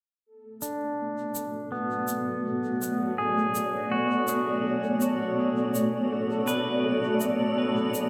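A bubbling, resonant texture of stepped-filter sawtooth tones opens this hazy, spacious ambient dub excerpt at 0.3 s, joined at 0.6 s by a bright, twangy pedal steel guitar picking clean, compressed slide arpeggios with volume swells under a low-pass filter sweep and dub echo, alongside a faint brushed acoustic shaker, before a blurred, full-bodied granular cloud pad drifts in at 1.3 s with evolving sustained chords over Bm7, all set in a wet echo chamber.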